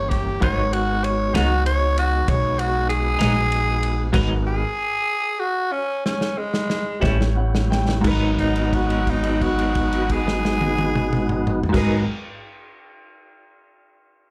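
A raspy, growling tenor saxophone solo opens this soulful, brooding slow blues fragment in 12/8, heard as a live club gig through the venue's PA, backed by a thumpy, woody upright bass up front, a smooth tonewheel organ holding chords through a slow rotary speaker, a dark soul drum kit with a punchy kick, a compressed clean electric guitar with tremolo and slapback echo, and a clear baby grand piano in the background, as the band slows into a stop at 4.1 seconds before a drum fill and a piano fill lead to the saxophone's held note from 8.0 seconds.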